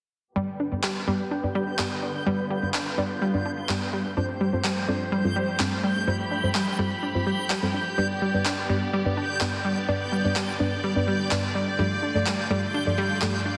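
Euphoric and uplifting, this progressive house passage moves at 126 BPM in a straight 4/4 groove, set in G mixolydian and cut from a longer piece. A rich, distant string section holds lush, vibrato-laden chords from the low to the high register, while a round, detuned analog pluck spins sawtooth arpeggios dressed in chorus and tape echo. A deep, nasal chord stab with a dark, cassette-worn character adds short, soft hits, and all three of these parts move through a filter sweep across the whole 0.4 to 13.6 second span. At 0.8 seconds overdriven electronic handclaps, layered and re-recorded in a large room, join the percussion, and from 1.2 seconds a reversed, granular texture drifts in high above, dreamy and swelling with its own built-in reverb. The harmony circles from G through Fadd9/G and back to G before settling on Dm/G, all framed by a moderate hall reverb and a dense, heavily limited modern master.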